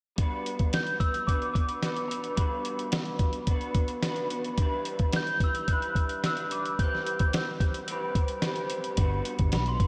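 A muffled, pitched-down sampler drum kit with a thumpy kick sits up front in this hazy, laid-back slice of indie bedroom pop, cut from a longer piece. A twangy, slightly broken-up electric guitar through a small old amp, treated with chorus, vibrato and slapback echo, plays beneath a mellow, bell-like glockenspiel melody struck with rubber mallets from 0.7 s, its ringing tone colored by analog chorus, slapback echo and analog delay, as the chords drift from Gmaj7 through Em7 and Am9. A dark, foam-muted fingered bass enters in the background at 9.0 s, and a lush hall reverb lends the recording an arena-sized sense of space.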